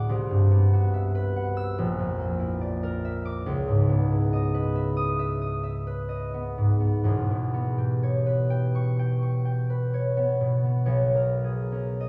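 Classical solo harp music, serene and dreamy, unfolds in a free rubato 4/4 in this short excerpt from a longer piece. A concert harp carries everything from 0.0 to 12.1 s, its thumb-plucked, ringing tone sitting up front while spanning from E1 up to E6, drifting through colourful harmonies such as Cmaj7#11, C#m9 and Em6. A wet church reverb of 2.9 s surrounds it, and at 10.8 s the music turns to a new section on a Bmaj7sus2 chord.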